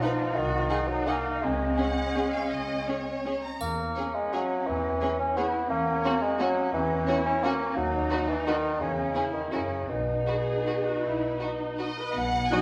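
A punchy bassoon sits up front in this elegant, sweeping orchestral ballroom waltz, cut from a longer piece. It moves in a rubato 3/4 at 149-188 BPM and settles into B major from 3.6 s. A lush symphonic violin section carries the smooth, focused melody over a rich chamber violin second line, with expressive violas in the background, a distant cello section on the bass and a soft-attack double bass section entering at 0.4 s, while a dark-toned triangle sounds briefly in the background. At 12.5 s a tight French horn section holds chords as a bright clarinet, a pure silver flute and a cor anglais touch in on the final moment, and the whole ensemble sits in a wet concert hall reverb.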